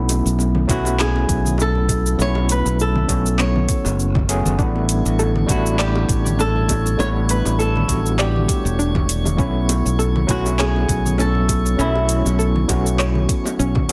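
A lightly swung 100 BPM groove in 4/4 drives this wistful sunset chillout, where an overdriven electronic kick and an overdriven smooth R&B kit of handclaps, metallic hi-hat and shaker sit over background bongos and congas, while a bright, growly fingered electric bass sits up front beneath a barky, gritty tine electric piano with fast tremolo and digital delay, a fingerpicked flamenco guitar with audible finger squeak carries the melody from 0.7 seconds, and from 4.6 seconds a soft, round pluck arpeggiates with chorus as a glassy, drifting harmonics texture joins in the background, all moving between B9sus4 and A9sus4 in a dense, heavily limited mix with light digital ambience.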